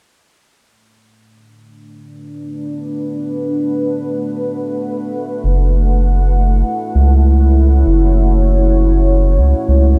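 A round analog bass with a filter sweep enters at 5.4 s, deep and up front beneath a moody, detuned sawtooth pad that has held sustained chords with slow attack, chorus and its own reverb since 2.2 s, the harmony moving from Bm7 to F#m7 in this meditative, free-time ambient dub excerpt in B minor, set in light reverb.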